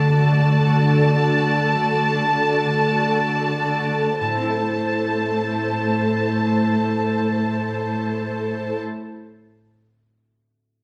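A cinematic, emotional film score for orchestra in A dorian, this brief excerpt moves at a slow, rubato 46-58 BPM and carries a longing, moving mood. Muted violins hold the melody up front on a high A, their con sordino tone veiled and lush with vibrato, while a second violin line sits just beneath. Close, dark violas fill in the accompaniment and a chamber cello section supplies a smooth-topped bass, all of the strings bowed as an ensemble. A ringing concert harp picks out arpeggios in the background and sustains briefly after the strings stop at 8.8 seconds. The opening stretch slows as it settles from D toward A minor at 4.2 seconds, and a stone room's reverb gives the whole ensemble a wet, enveloping space.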